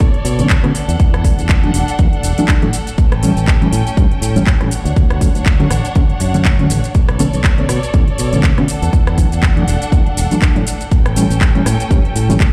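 A punchy electronic kick sits up front and drives this sensual, groovy slice of filtered disco house, which is cut from a longer piece and carries a swung sixteenth-note feel. Around it, a house drum kit adds handclaps, rim clicks, shaker and metallic hats, with the hats, cymbals and percussion pumping, and both drum parts share a tape-tinged, small-room character. A growly fingered electric bass sits beneath a reedy electric piano coloured by fast tremolo, phaser and 12-bit sampler grit, and both pump and are muffled by a low-pass filter. High above, a distant, lush violin section holds bowed chords with vibrato, carrying the same grit, pumping and filtering over a cycle of Bm9, E9sus4, A7 and Dmaj7. The mix plays back through a big sound system in a bare stone room with light reverb.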